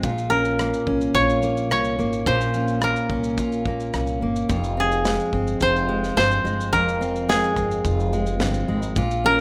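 Koto and fingerpicked steel-string acoustic guitar open this short acoustic pop excerpt together, joined at once by upright bass and a modern studio drum kit, setting a tender, wistful mood in F minor at 107 BPM in a straight 4/4. The koto carries the melody between Ab4 and Db5, its fingerpicked tone dry and woody and placed up front. Beneath it, the dreadnought guitar fingerpicks a full-bodied accompaniment from F2 to F4, with audible finger squeak, while the pizzicato upright bass sits low and dark, sounding F1 to C2. The drums sit quietest in the mix, with kick, rim click, shaker and snare heard through a mid-forward studio room sound, a tight kick and a rolled-off top, before stopping at 9.2 seconds as the others ring to 9.4. The harmony moves from Bbm to Fm at 4.5 seconds, and a moderate plate reverb colours this rough home demo mix.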